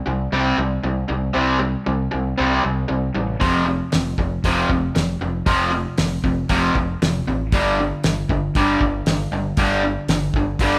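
A band playing live together in one room fills a large studio, its moderate reverb lending a roomy glow to this short classic rock excerpt, which is cut from a longer piece. The mood is sunny and driving, at 117 BPM in a straight 4/4, tuned slightly under standard to A4 = 439 Hz. A raw garage guitar opens at 0.0 seconds with a bright, overdriven, double-tracked riff sitting up front, moving through C5, F5 and G5 power chords. A growling picked electric bass joins almost at once, its warm, amped tone roughened by overdrive and sitting lower in the mix. At 3.4 seconds a damped 70s drum kit enters with hi-hat, a fat snare and a tight kick, its dry, mid-forward sound giving the riff a punchy push.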